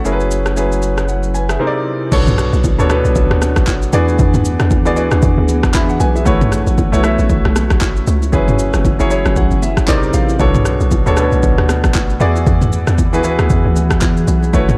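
Soulful and hypnotic, this short amapiano cut from a longer piece sets a clear, polished baby grand piano and a glassy, ethereal FM pad with chorus and sidechain pumping over an up-front deep house kit with a deep kick and handclaps, a saturated sub bass that drops out at 1.6 seconds, and a hollow, bouncy log drum bass that arrives with very quiet acoustic congas and bongos at 2.1 seconds, while the piano adds fills around 5.5 and 8.8 seconds over ninth and sixth chords with a swung feel in a dark production.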